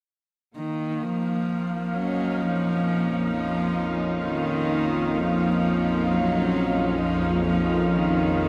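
A close, intimate solo cello, played sul tasto with light vibrato and a soft, airy bow, carries a melody through delay from 0.6 seconds, set up front over a rich, biting, earthy cello section holding sustained Bb minor chords. This dark, unsettling ambient drone piece at 65 BPM adds a tense, sawtooth-edged bowed-like drone with ring modulation and vibrato from 1.9 seconds, and a breathy, wind-like tuned noise texture from 1.0 seconds, both bathed in their own reverb. A huge, wet reverb with a 9.1-second decay surrounds the sound in this passage cut from a longer piece.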